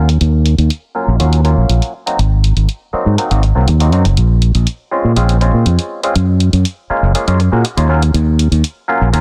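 Groovy and nostalgic, this short cut from a longer filtered disco house track runs at 121 BPM in a straight 4/4, tuned slightly flat with A4 at 436 Hz. A fingered electric bass sits up front, bright, growly and direct, holding the low register beneath a filter sweep that spans the whole passage. A twangy, stringy clav plays the accompaniment through a phaser and a low-pass filter, sitting quieter in the mix than the bass. An analog-sounding electronic hi-hat enters at 0.1 seconds, re-recorded in a small room and sent through its own low-pass filter, kept furthest back of the three parts. The harmony moves through Ebm9, Ab9, Bbm9 and Gbmaj9 before returning to Ebm9, and the dry mix carries little reverb.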